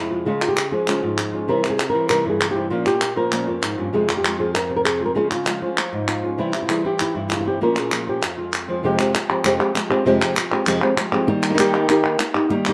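A thumb-plucked flamenco guitar carries the melody up front, its warm acoustic tone driving this intense, passionate flamenco fragment over a descending Db, C, Bbm, Fm progression. A second fingerpicked guitar adds stabbing chords, with finger squeak audible on the strings, while crisp palmas hand claps sit up front in a live room. At 8.8 s the harmony settles onto Fmadd9 before moving to Eb, all under a light reverb.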